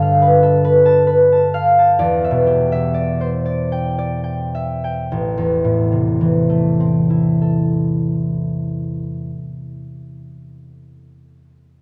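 A solo concert harp opens this brief, mysterious and wistful classical fragment in A minor, its fingerpicked, ringing tone placed up front and spanning A1 to A5 in a rubato 3/4 at 50-73 BPM. The opening phrase moves from G9 to Em7 while slowing down, then settles on Am as a new section begins at 5.1 seconds. A wet concert hall reverb surrounds the harp, and a worn, warbling cassette tape character adds warbly pitch drift, giving the piece a faded, old-memory feel.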